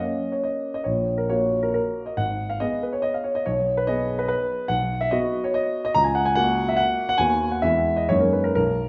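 This romantic classical piece is a triple-time dance in 3/4 for solo concert grand piano, with dotted rhythms that give it a rustic yet graceful character. The tempo moves between 120 and 154 BPM with a flexible rubato feel, and the key settles into B major from 4.7 seconds. The piano sits up front with a natural tone and a deep bass, spanning G#1 to A#5. The harmony passes from F# through G# minor toward B, then reaches E before closing on an F#6/9 chord at 8.1 seconds. A stone room reverb surrounds the instrument with a resonant, lingering space, and the short passage is cut from a longer piece.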